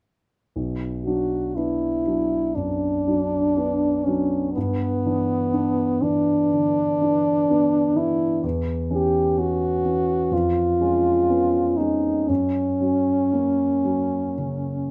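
Melancholic and solemn, this romantic classical duo unfolds with a slow, freely breathing rubato pulse, cut from a longer piece. A dark, mellow grand piano with a vintage, long-sustaining tone lays down the accompaniment from 0.6 seconds, and at 1.1 seconds the French horn enters up front with a warm, lightly vibrato-tinged solo melody in a classical style. Light reverb surrounds the pair as the harmony moves from B minor through G6, Em69 and C#7/E# before settling on F#.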